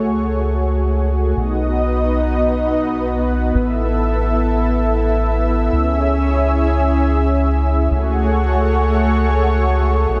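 A silky, detuned sawtooth string pad carries this driving, nostalgic synthwave fragment in free time, its slow-attack chords bright with ensemble chorus and shaped by a filter sweep across the full 10.2 seconds as the harmony moves from F#madd9/C# through B, Asus2 and C#m back to F#madd9/C#. Beneath it from the very same moment, an up-front chorused synth bass blends pulse-width-modulated pulse and sawtooth tones into a glossy, nasal, dark sound with a fast-attack filter pluck that then sustains. A moderate plate reverb surrounds both parts, and the dense, heavily limited modern master carries a faint mains hum.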